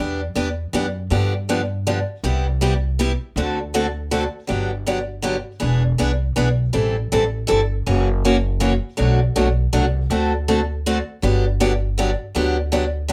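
A swung waltz pulse at 160 BPM in 3/4 drives this charming, playful piece of acoustic string swing in the jazz manouche style, set in G major and cut from a longer performance. A picked steel-string acoustic guitar carries the accompaniment from start to finish, its fresh strings giving a bright, boxy parlour tone that sits up front. Beneath it, an upright bass plays pizzicato on gut strings throughout, sounding woody, dark and thumpy, also placed close to the listener. The harmony moves briskly through seventh chords, opening on Em7 and G7, and a second pass beginning at 4.5 seconds travels through E7, Am7 and F#7 before settling on Gmaj7 at 11.2 seconds. A moderate studio reverb lends the pair a modest sense of room.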